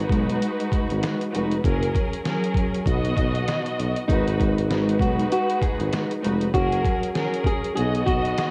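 Boom-bap hip-hop with a dark, moody cast, this short excerpt moves at 98 BPM in 4/4 with a swung sixteenth-note feel in G# minor. A sampler-style drum kit, compressed, pitched down and muffled with a thumpy kick and medium-tuned snare, sits up front with a cassette-tape haze. Beneath it a mellow tuba carries the bass with vibrato, a punchy attack and a smooth top. A lush bowed string section, expressive with vibrato and portamento, drapes the accompaniment in filtered tape color, while a tonewheel organ on a slow rotary speaker holds very quiet, clean sustained chords. At 4.1 seconds a fingerpicked nylon-string guitar enters with a classical melody, finger squeak audible through its filtering, tape grit and analog delay, as the harmony cycles through G#m7, F#add9 and B inside a small, home-recorded room.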